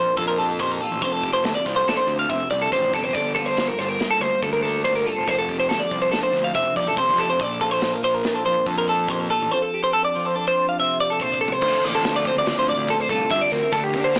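In a straight 5/4 pulse, this intricate, bright math rock and midwest emo excerpt sets a twangy twelve-string electric guitar picking delayed arpeggios over a second clean, up-front twelve-string playing chorused accompaniment through lush major-ninth and six-nine chords. A round, fuzzy fingered bass and a loose indie drum kit, with dark cymbals and a pumping small room, support them until a drum fill at 11.2 seconds leads into a Dm7 passage at 11.6 seconds, all heard through a blown-out, overdriven mix with a small-speaker sound.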